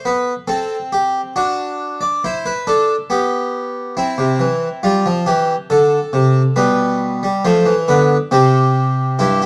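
A straight, stately 3/4 pulse at 69 BPM carries this lively baroque-style three-part fugue in C major, cut from a longer piece and played on a solo harpsichord tuned to A4 = 439 Hz. The close-miked, up-front French-style instrument, with its two sets of strings, sounds plucked and full as it ranges from G2 to D5, moving through harmonies such as Am7/C, D, G/B and C before reaching G7/B and settling on C5 near 8.3 seconds. A moderate stone-room reverb frames the dark production.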